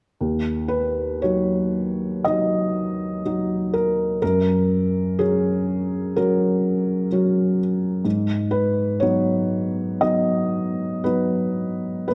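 Dark and bathed in a wet scoring-stage reverb with a 1.7-second tail, this reflective, intimate fragment of neoclassical minimalist piano features a lone felt-muted upright, soft, mellow and sitting up front, played with rubato at around 61 BPM in 4/4 across Eb2 to Eb5 as the harmony moves from Eb minor through Gb to Abm7 over about 12 seconds.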